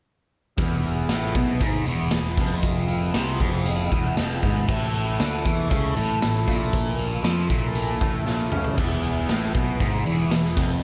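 A raw, gritty garage drum kit sits up front in a bright, pumping stone room, its punchy kick and medium-tuned snare driving this dark, hypnotic psychedelic rock excerpt in a straight 4/4, with crash, hi-hat and toms and a fill at 8.3 seconds. A double-tracked fuzz guitar, bright and compressed with distortion and phaser, plays a low riff as the harmony moves from E to A5 and back to E. Beneath it, a round, dark picked electric bass stays in the background while a reedy, nasal hand-pumped harmonium breathes sustained chords, all inside light reverb and small room ambience.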